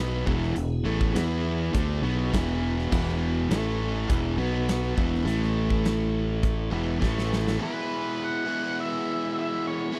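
Sunny and swaggering, this classic rock passage from a longer piece struts in a straight 4/4 at 102 BPM in E major. A biting overdriven guitar riff sits up front beside a growly, punchy fingered bass, with a sludgy distorted guitar riffing in the background, a very quiet tonewheel organ holding piping, key-clicking chords through a slow rotary speaker, and a big rock kit with a punchy kick and medium-tuned snare entering at 0.3 seconds. After a drum fill, the bass, kit and sludgy guitar stop at 7.6 seconds as a dark octave-fuzz lead guitar takes the melody with slapback echo, all captured in a dry, close 1970s-style studio sound.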